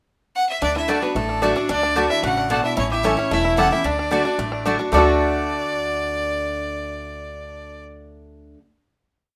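Set in a moderate studio reverb, this short, rustic and joyful bluegrass piece in D major races along at 223 BPM, with a biting, airy fiddle up front carrying a motif-based melody from 0.4 seconds over thumpy gut-string upright bass in two-beat root and fifth, a bright picked steel-string guitar alternating bass and strum with bass runs, twangy three-finger banjo rolls, woody mandolin chops on the off-beats and a nasal, metallic lap resonator guitar sliding a harmony line mostly in sixths in the background, before the tune settles on a final chord at 4.9 seconds.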